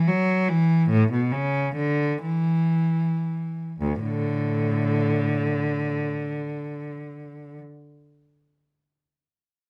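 A rich, smooth solo cello, bowed with vibrato by a single player and sitting close and up front in light reverb, plays a serene, dance-like baroque-style suite movement in D major and a rubato 6/8 at 36-52 BPM in dotted quarters, ranging from D2 to F#3, slowing through the opening 3.8 seconds before a new section begins, with the cello stopping at 7.6 seconds in this excerpt from a longer piece.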